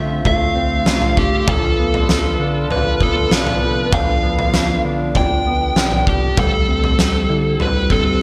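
An oversized, low-tuned acoustic drum kit with a boomy kick, fat snare and toms sits up front in a pumping big room, gritty and saturated, while an overdriven slide guitar carries a dark melody with subtle chorus and delay from 0.3 seconds. This hazy, haunting dream pop fragment moves at 98 BPM in 4/4 over Dm7, G7 and Am7. Beneath it, a clean, compressed electric guitar plays mellow fingered arpeggios, a glossy, detuned chorused synth bass holds the low end in the background, and a smooth analog pad with slow attack and long release sustains chords, all bathed in lush hall reverb with a bright 1980s-style digital sheen.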